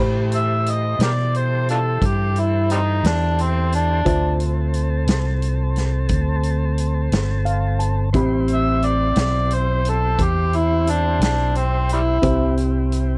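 An overdriven, gritty harmonica leads this mournful, brooding slow blues excerpt in A minor, playing an up-front jazz-style solo with light vibrato, tongue slaps and scooped notes over a 12/8 pulse at 59 BPM, as the harmony moves from Am9 to Dm9 and back. Beneath it, an amped fingered electric bass sits up front, a clean tonewheel organ holds smooth sustained chords through a slow rotary speaker, and a dark, mellow vintage grand piano with short sustain comps, adding a brief fill at 7.1 s. A raw small-room drum kit with a punchy kick, medium-tuned snare, hi-hat and a saturated, rolled-off top completes the dry, close 1970s-style studio sound.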